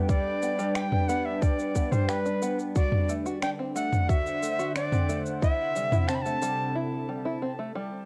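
A tight, tape-warm electronic kick and an up-front electronic kit of cabasa, finger snaps and toms set a straight 90 BPM 4/4 pulse for this playful folktronica excerpt in G major, moving from G to D7 to C6. Plunky, fingerpicked open-back banjo arpeggios with tape echo sit beneath a warbling, detuned, nostalgic pad of slow-attack sustained chords, while a breathy jazz flute carries the melody with vibrato, chiff and gritty 12-bit sampler texture. The cassette home recording has a moderate studio reverb, and at 6.8 s the banjo continues alone until 8.1 s.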